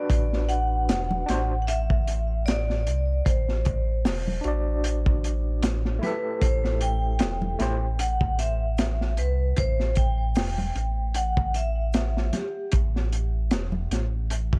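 Smoky and melancholic, this short trip hop excerpt settles into a swung 4/4 groove built on a single Am7 chord that shifts to Esus4 at 12.7 seconds. A crunchy breakbeat kit sits up front with a high-tuned snare, tight kick and hi-hat, its saturated, rolled-off tone dark and gritty, while a deep, rumbling detuned saw bass beats and sustains underneath. A metallic, ringing vibraphone struck with hard mallets carries the melody through dub echo, its fast motor vibrato heard in a boxy small room until 12.7 seconds. Beside it, a barky, overdriven tine electric piano plays accompaniment through a combo amp, shimmering with fast tremolo, tape echo and vintage 12-bit sampler grit before dropping out at 7.9 seconds. Tube shaker and congas add soft acoustic texture in the background, and the whole recording is coloured by worn cassette tape with warbling pitch drift.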